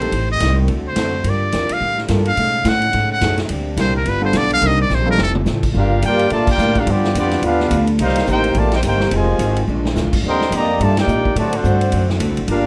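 A buzzy, thin metal-muted trumpet leads this dramatic, sultry big band swing excerpt at 214 BPM, backed by a growly upright bass, a softly placed piano with audible action noise, a very quiet boxy archtop guitar, tight trombone chords and a big-room drum kit with a punchy kick in a moderate club reverb, until the muted trumpet and piano drop out and a smooth-topped trumpet section takes the melody at 5.8 s in G minor over a second trombone line, with band accents at 6.4 and 10.9 s.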